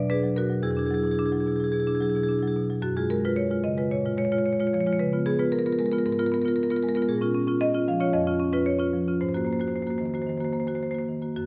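A solo marimba played with medium hard mallets opens on an E9 chord, its rosewood bars sounding woody, bright and percussive, and placed up front in a lush recital hall reverb. This contemporary classical excerpt moves at a moderate 112 BPM in a straight 4/4, tuned to A4 = 441 Hz, with a playful mood and a dark overall production. From 2.8 seconds it shifts into a new passage that moves through F#sus2 and rootless A#m7, C#6 and G#9 harmonies across a range from E2 to E#5.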